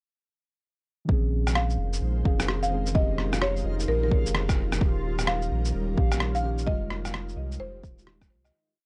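This future garage piece has a nocturnal, ghostly mood, with a swung, shuffled feel in which the groove settles in at 1.1 s. A deep, muffled two-step kick carries tape-warm, gritty sampler character, while a compressed, overdriven rim click and shaker skitter up front with a pitched-down, small-room crunch. A round sine sub bass plays long gliding notes. Muted, felt-like synth keys hold dark, intimate chords with syncopated pushes over a slowly shifting, ethereal pad in the background, and the harmony moves from Bbm11 to Eb7 to Fm9. A buzzing, woody marimba offers short, dry, close-miked phrases with analog delay, and a reversed, granular swelling texture sustains a bright, dreamy high note behind it. The recording feels dry and hardware-gritty within a digital ambience, and the piece fades out from 6.0 s to its close.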